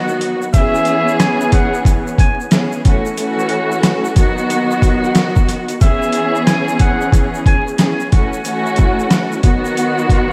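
Muted, veiled strings open this moody, dark boom-bap hip-hop passage, their lush bowed ensemble sound tinged with cassette-tape color as the chords move through C#m7, A6 and B in C# minor. Almost at once a sampler-style drum kit arrives at 91 BPM with a swung 16th feel. Its gritty, pitched-down hits are overdriven and up front, pairing a thumpy kick and a medium-tuned snare with hi-hat and rim click, while a grainy egg shaker sits quietly in the background. At 0.5 seconds a trumpet with a straight mute takes the solo melody in a jazz style, nasal and breathy with light vibrato and scooped notes. It sits distant in the room and trails a diffuse ambient delay until 7.6 seconds. The dreamy mix is soaked in hall reverb and carries vinyl crackle, and the piece is cut from a longer work.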